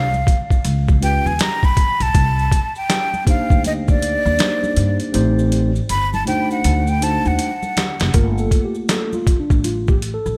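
A breathy silver flute carries the melody over a growly pizzicato upright bass from the start, with delay on the flute, soft congas and maracas in the background, and a gritty, pitched-down boom bap drum kit with a thumpy kick entering at 0.3 seconds, in this smoky, nocturnal jazz-hop excerpt in G minor at 80 BPM with a swung feel, where a mellow tine electric piano joins at 1.0 seconds, a drum fill runs from 5.1 seconds, and the electric piano takes a short solo from 8.1 seconds over chords moving from Dm7 through C#7#11, Cm9, Am7b5 and D7b9 to Gm9, all in light reverb.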